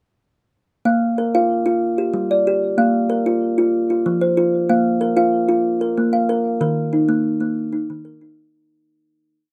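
Rippling and warm, this short southern African traditional piece in 12/8 features a solo kalimba, woody and ringing with a hollow-box resonance, which cycles through an interlocking mbira-style ostinato from 0.9 seconds, its thumb-plucked tones sitting up front with a slapback echo and light reverb in an open outdoor setting before fading out between 6.6 and 8.5 seconds.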